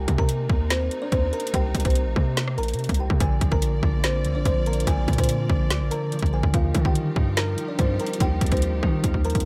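A hollow, woody kalimba melody with delay opens this brooding, eerie trap excerpt over lush, bowed symphonic strings holding chords and a punchy, heavy 808 bass, moving through Cm7, Bb and Ebadd9 at 144 BPM in a half-time feel, tuned to A4 = 435 Hz. At 0.1 s an up-front electronic trap kit joins with a hard-clipped kick, woody snare, rim click and metallic hi-hats, and a fingerpicked, ringing concert harp adds accompaniment from 3.2 s. A drum fill closes the passage at 9.0 s, all set in a small room ambience.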